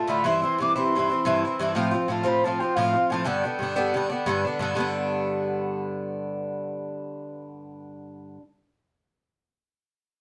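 A dark, warm studio sound with moderate reverb frames this lively, bright Celtic folk tune in 9/8, moving at 120 dotted-quarter beats per minute in G mixolydian over C, F and G chords. A mellow wooden flute sits distant and airy, carrying the melody with soft attacks and vibrato until 4.4 seconds. The up-front Irish bouzouki's picked, metallic double strings drive the accompaniment and continue alone until 8.4 seconds in this cut from a longer piece.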